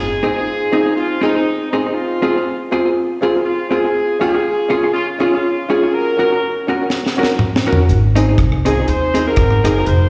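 A punchy horn section opens this bouncy, cheerful ska excerpt in Ab mixolydian, carrying the melody up front with a light vibrato and a slapback echo at a lightly swung 121 BPM. Almost at once a dark, clean, picked hollow-body jazz guitar joins with compressed accompaniment. A boxy upright piano sits in the background, adding short-sustain stabs over the Ab, Fm, Db and Gb changes. At 6.9 seconds a dry reggae drum kit breaks in with a fill, its high-tuned snare, tight kick, rim clicks and toms placed up front. At 7.9 seconds a woody pizzicato upright bass with steel strings arrives as the harmony returns to Ab. The whole performance sounds like a live gig heard through the venue's PA, with recital-hall reverb and a small-room ambience.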